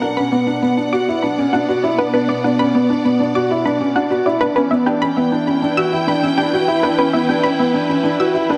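This piano-and-strings electronica piece, cut from a longer work, moves at 99 BPM in 4/4 with a straight feel in B minor, carrying a melancholic, moving mood through a build-up. A felt-muted upright piano sits up front with a soft, intimate riff, its mellow tone colored by digital delay and audible action noise. Alongside it, a dark studio string section holds bowed, woody sustained chords with vibrato and a lush ensemble sound, while an analog pluck spins bright, round arpeggios treated with chorus and digital delay. A very quiet detuned saw bass rumbles deep underneath. The harmony shifts from Bm to Em at 4.6 seconds, and the whole passage sits in a moderate, lush hall reverb.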